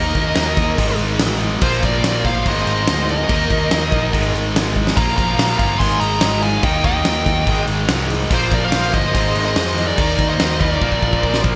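Hard rock with an anthemic, powerful mood, where a dark, overdriven lead guitar carries the melody over a backing second lead line, both coloured by digital delay. Three picked rhythm guitars, two of them distorted (one of those high-gain) and one a very quiet semi-hollow body, drive the riff beneath a growly picked bass and a faint, detuned sawtooth pad that warbles with chorus. A huge arena drum kit with a fat snare, punchy kick and bright cymbals sits up front, with fills at 4.8 seconds and from 10.8 seconds, all framed by plate reverb and bright 1980s-style production in this cut from a longer piece.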